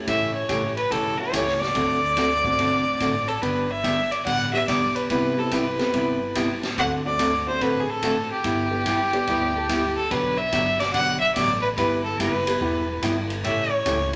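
Playful and down-home, this western swing country excerpt moves at 144 BPM in G major, with a clear, biting fiddle carrying the melody up front over a dark hollow-body jazz guitar, a thumpy pizzicato upright bass and a swinging big-band drum kit with a high-tuned snare and punchy kick. A smooth, vintage upright piano sits in the background, dropping out at 9.3 seconds and returning at 12.5, while a compressed lap steel guitar adds a brief slide line with volume swells from 8.9 seconds. The whole band sits in a wet, large studio reverb that gives it a spacious sound.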